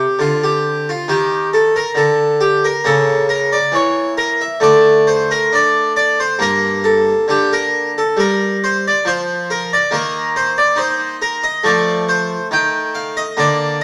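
A solo harpsichord opens this short portion of a longer baroque-style suite movement, its plucked, Flemish-style tone full and up front, sounding on two sets of strings across a range from G2 to G5. The mood is introspective and grave, in G minor at a slow 68 BPM in 4/4, played with a free, rubato feel as the harmony moves from C minor through a brooding C-sharp minor sixth toward G minor, then to E-flat and F. A stone room's reverb surrounds the instrument with a lingering, resonant wash.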